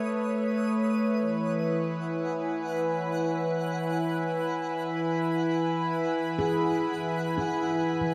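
Reflective and serene, this ambient fragment at 61 BPM sets a smooth, detuned sawtooth pad with chorus up front, holding sustained Aadd9 and E chords from 0.0 s, beneath a faint, sparkling granular shimmer bathed in its own reverb, and later a mellow, ringing handpan played with soft fingertips enters at 6.4 s with arpeggios trailed by a diffuse delay, all within a vast, echoing cathedral reverb.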